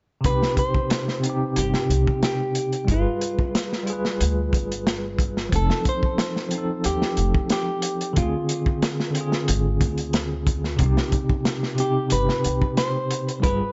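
A bell-like tine electric piano sits up front in this smoky, melancholic trip hop excerpt at 91 BPM in C harmonic minor, its bright, clean chords shaded by tremolo, tape echo and a filter sweep across the whole passage as the harmony moves from Cm through G7b9, F7 and Dm7b5 back to Cm. Beneath it, a pizzicato upright bass with gut strings gives a woody, thumpy low end, while a crunchy breakbeat kit with a tight kick and medium-tuned snare sounds saturated and gritty in a small room. A fingered semi-hollow guitar carries the melody from 0.3 seconds, hollow-bodied and clean yet roughened by vintage 12-bit sampler grit and tape echo, all within a studio ambience.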